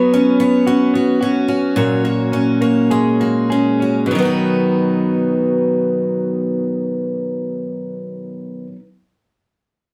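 In straight 4/4 at 96-113 BPM, slowing down over the first 4.1 seconds, this carefree, heartfelt acoustic pop fragment in B major pairs a bright, full-bodied picked steel-string acoustic guitar up front, with fresh strings and audible finger squeak, against softer compressed arpeggios from a clean, direct-recorded electric guitar, both moving from Bsus2 through F#add9/A# to B in a moderate studio room heard from further back.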